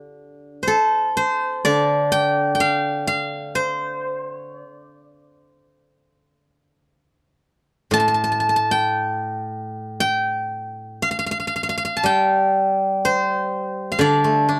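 Rubato and unhurried at around 51-63 BPM in 4/4, this short cut from a longer Chinese traditional piece in D yu mode, tuned to A4 = 436 Hz, features a solo steel-string zither played with fingerpicks, its silvery, ringing tone sitting up front in a dry, close 1970s-style studio sound with light reverb as it moves through two sections, the second beginning at 7.9 seconds, in a longing, contemplative mood.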